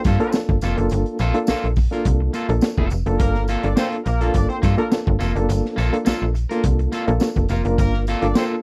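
Sly and cool, this short funk excerpt moves at 105 BPM in 4/4 with a straight feel, sitting in G minor on a single Gm9 chord throughout. A crunchy breakbeat drum kit drives it with a punchy kick, high-tuned snare and hi-hat, its saturated, gritty tone dark with a rolled-off top, while a slap-like FM bass sits up front with a snappy, metallic attack between F1 and G2. A barky, reedy electric piano, lightly overdriven and pulsing with fast tremolo, punches out stabs from the very start, joined at 0.1 seconds by a twangy electric guitar at the edge of break-up playing accompaniment in the same register. A horn section with light vibrato carries a second line from 0.2 seconds, sounding distant and roomy, and a jingly tambourine rattles far in the background. The mix is dry and close in a 1970s studio style with little reverb, and the piece is cut from a longer work.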